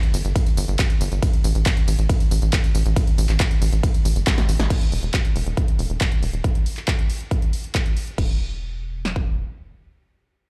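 This uplifting trance excerpt, cut from a longer piece, runs at 138 BPM in a straight 4/4 in E minor, tuned slightly below standard pitch, with a bittersweet, driving mood. It opens on a drop, where an overdriven analog drum machine lays crash and ride cymbals, handclaps, hi-hat, snare and tambourine, its snare, clap and hats set in a short room. A tight sequencer bass sits up front between E1 and A1, blending sawtooth and square waves into a mellow, decaying filter pluck that evolves as it pumps against the sidechain. A layered big-room dance kit adds a hard-hitting kick and snare, and a drum fill at 4.3 seconds carries the music into the next section. The drum machine drops out at 8.3 seconds, and the whole mix sounds as if it is played on a big sound system in a bare room, bathed in large studio reverb.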